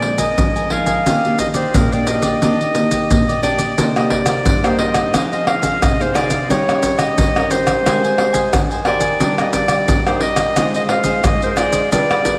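A bright, classical-style solo clarinet with tape echo carries the melody up front in this joyful, lively samba and choro excerpt. Beneath it, a crisp picked cavaquinho sits in the background, and a small, fingerpicked nylon-string guitar with fresh strings, audible finger squeak and lush chorus fills out the harmony. Up-front hand percussion of pandeiro, maracas, tamborim and a deep surdo has a vintage, band-limited sound, and the whole dreamy mix is soaked in a lush hall reverb as the chords move from Bb7sus4 through Ebmaj7 and Abmaj9.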